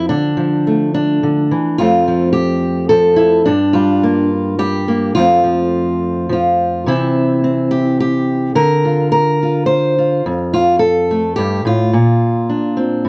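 A lone fingerpicked steel-string acoustic guitar, dark-toned and up front in a dry, close 1970s-style studio sound, carries this hopeful, nostalgic folk excerpt in F major at 107 BPM in a straight 3/4, ranging from F2 to C5 as it moves through Dm, Fadd9, Gm7 and F before shifting at 6.9 seconds into a second passage of C, Bbadd9/D, F and Bbadd9 that runs to 13.1 seconds.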